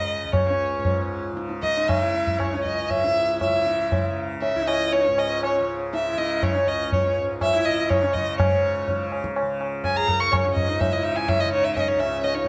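A dark, up-front bowed violin with vibrato and expressive portamento opens over a shimmering, buzzing tanpura drone, soon joined by low-tuned, ringing tabla and a rich, distant sarangi second line with gliding phrases and sympathetic-string resonance, in this solemn, meditative Hindustani classical excerpt in 4/4 that speeds up from about 115 to 127 BPM, the violin carrying slapback echo and plate reverb within a close, detailed studio sound.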